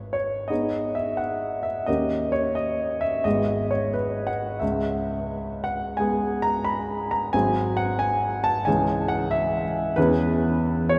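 Passionate and bittersweet, this romantic character piece for solo piano unfolds with a free, rubato feel and uneven beats across its brief span, cut from a longer work. The grand piano sounds warm, intimate, natural and up front, with its action noise clearly audible, ranging from G#1 to B5 as the harmony moves through minor chords and dominant sevenths. A wet cathedral reverb with a 5.4-second decay places the instrument in a vast, echoing space.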